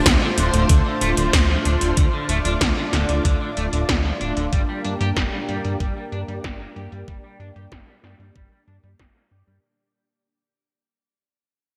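A straight 4/4 synthwave groove at 94 BPM, carried by a knocking, layered electronic kick and up-front 80s pad drums with a gated snare and metallic hats under low-pass filtering, sets a nostalgic, cinematic mood across this short cut from a longer piece, moving from Dm7 to Gm at 4.5 seconds. A glossy, detuned pulse-and-sawtooth synth bass and a lush, full string machine with slow-attack sustained chords, ensemble chorus, sidechain pumping and shimmer reverb both ride filter sweeps, while a twangy, slightly broken-up electric guitar plays a fingered riff through lush chorus, digital delay and shimmer reverb. The bright 1980s-style digital production sits in a lush hall reverb, and the whole passage fades out, with the kick dropping away at 9.1 seconds.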